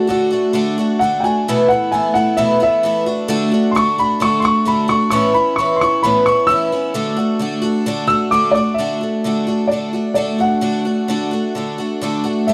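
A dry, close, small-room sound with a 1970s studio character frames this nostalgic, jangly rock fragment at 131 BPM in straight 4/4. A dark, mellow concert grand piano with a deep, boxy low end carries the melody and takes a solo through the first 8.8 seconds. Up front, a bright, shimmering, octave-doubled twelve-string acoustic guitar picks the accompaniment over chords moving among D, Esus4 and Aadd9.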